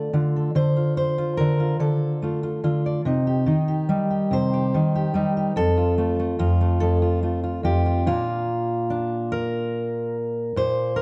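A 6/8 metre with a straight feel carries this short folk passage at an unhurried pace, counted in broad dotted-quarter beats. A single fingerpicked steel-string acoustic guitar plays alone throughout, its jumbo body giving a dark, full-bodied tone that sits up front in the mix and spans from low bass notes to the upper strings. The mood is gentle and hopeful as the harmony moves from Dm to Cm and then to F, before a new section opens on Bb at 8.1 seconds. A moderate recital-hall reverb surrounds the instrument with a sense of space. The recording is cut from a longer piece and ends at 11.0 seconds.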